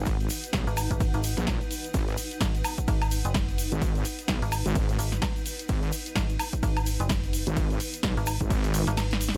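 A heavy, saturated wobble bass with detuned sawtooth unison and chorus sits up front in this bouncy, aggressive bass house excerpt in G# minor at 128 BPM with a swung 16th feel, joined at 0.7 seconds by a metallic FM bass, both pumping against the kick. A punchy, tape-warm electronic kick drives the groove alongside a layered house kit of snare, hi-hats, ride cymbal and woodblock, with a grainy egg shaker tucked in the background. A cloudy, evolving granular pad drifts beneath, and the kick drops out at 9.0 seconds for a closing drum fill.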